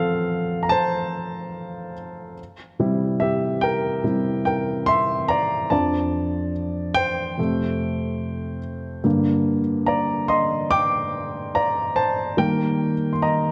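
A dark, mellow baby grand piano plays alone, up front and intimate with its action noise audible, across this heartfelt, hopeful pop excerpt in a straight four-beat feel, spanning F2 to D6 as chords drift from F through C, F6/9, Fadd9 and Gm to Eb, all set in a moderate concert hall reverb with a dark, warm production.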